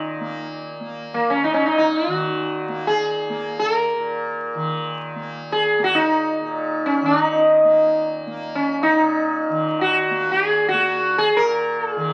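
A plectrum-plucked sitar with buzzing, shimmering sympathetic strings carries a longing, introspective Hindustani melody in raga Malkauns on Bb, sitting round and up front over a softly plucked tanpura drone, both sounding from the first second to 12.1 s in free time, wrapped in a wet studio reverb and the crackle of a very old 78 rpm record, cut from a longer piece.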